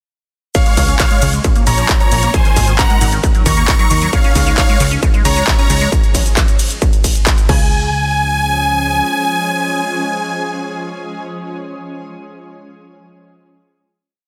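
Euphoric, uplifting trance piece built on a distorted, up-front four-on-the-floor kick and an overdriven analog drum machine of claps, hats, ride, shaker and crash, where a huge detuned supersaw lead with phaser and tape echo carries a repeating riff in thirds and sixths, doubled in unison by a brilliant grand piano in the background, over a punchy off-beat plucked bass, a squelchy resonant acid arpeggio looping in six steps against the bar, and a shimmering, warbling ethereal pad from 1.1 s, everything but the kick pumping in a dense, heavily limited drop that gives way at 7.7 s to a final hit ringing out on the lead, piano and pad.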